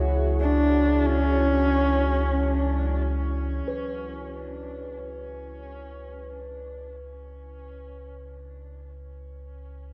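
Drenched in a cavernous cathedral reverb, this ominous, vast dark ambient drone drifts in free time as a rumbling, warbling low drone holds up front throughout, a chorused, mellow pad sustains a C#m chord until 3.7 s when the harmony moves to Bsus2/C#, a soft, airy singing bowl rings in the background, and a husky, woody horsehead fiddle with vibrato and portamento carries a brief, tape-echoed melody from 0.4 to 3.0 s.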